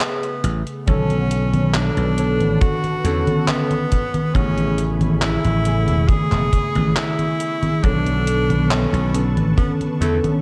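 Melancholic and hazy, this short vaporwave fragment drifts on a straight 4/4 pulse, moving between Amaj9 and Bm9 chords. A bright tenor saxophone carries the jazz-style solo melody with soft attacks and vibrato, trailed by tape echo. Warbling lo-fi synth keys with a nostalgic, mellow triangle-and-sawtooth tone supply the accompaniment through a phaser and subtle chorus, while a detuned 8-bit drum machine taps out congas, handclaps and hi-hat with a tape-warm, sampler-style character that sounds re-recorded in a large room. A growly, punchy slap bass arrives at 0.4 seconds, and an acoustic kick drum with a rolled-off top joins at 0.9 seconds, both sitting up front. From 1.5 seconds, a silky, vintage string machine with slow attacks and long releases holds sustained chords in the background under ensemble chorus, and the whole mix is bathed in light studio reverb.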